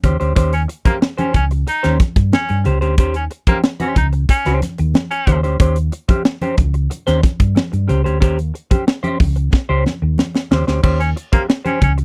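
This energetic, strutting funk excerpt opens with the full groove at once: a tight, up-front drum kit with a high-tuned snare, hi-hat, tight kick and a crash, joined by a round, dark hollow-body electric bass played with the fingers, moving between Db2 and G2. A clean semi-hollow electric guitar, treated with phaser, supplies accompaniment in Eb mixolydian over an Eb6 chord, while low-tuned congas with a thick-skinned, soft-handed tone sit in the background. At 0.5 seconds a breathy baritone saxophone enters as a second line, whispered and intimate with vibrato and a soft attack, before dropping out at 5.4 seconds. A drum fill from 9.5 to 10.8 seconds leads into a repeat of the section, and the saxophone returns briefly near the close. The tempo is a straight 92 BPM in 4/4, and the dry, close 1970s-style studio sound keeps the rhythm section present.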